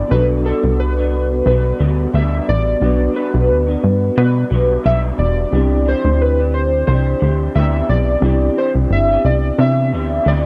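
A dry, close 1970s-style studio sound with light reverb frames this sunny, hazy indie pop excerpt with a lightly swung 16th-note feel, where warbling, detuned lo-fi synth keys with subtle chorus and tape echo carry the melody over a slightly broken-up electric guitar through a small old amp with ensemble chorus and vibrato, a mellow tine electric piano with a cassette-tape tint, and a punchy, funky, up-front analog bass with a dark filter pluck, the harmony shifting from Gmaj7 to Cmaj9 at 5.5 seconds.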